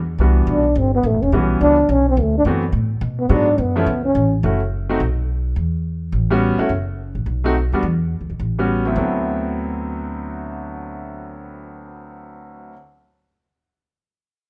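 Small-group swing and bop jazz with a sophisticated feel, in this short cut from a longer piece, carried by a woody, thumpy pizzicato upright bass and a clear concert grand piano with deep bass and long sustain comping beneath. A dark, breathy trombone takes the melody up front from 0.5 seconds, with light vibrato, soft attacks and scooped notes giving it a whispered, intimate tone before it drops out at 4.4 seconds. Light reverb frames the group as the rhythm section continues through rich extended harmonies.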